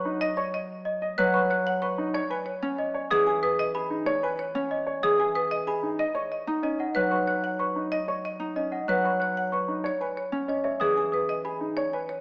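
Through a small-speaker sound and a moderate scoring-stage reverb, this hypnotic, urgent excerpt of minimalist classical pattern music runs at 187 BPM in 6/4 in C# minor, with a woody, boxy hard-mallet marimba carrying the melody over a mellow, fingerpicked Celtic harp, worn baby grand piano arpeggios with long sustain, and bell-like, slightly out-of-tune celesta arpeggios, all turning between B and C#m7.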